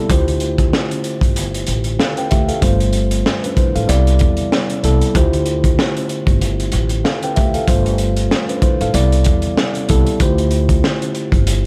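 A dry, crackling vinyl-tinged recording opens on a mellow tine electric piano, run through cassette tape and filtered at both ends, comping up front on a reflective Dm11 to Cmaj7 alternation in this short cut from a longer boom-bap hip-hop piece. A woody, thumpy pizzicato upright bass joins at 0.1 seconds alongside a crunchy, saturated breakbeat kit with a punchy kick, a high-tuned snare, hi-hat and a rolled-off top, all riding a gently swung sixteenth-note feel. The mood stays gritty yet reflective.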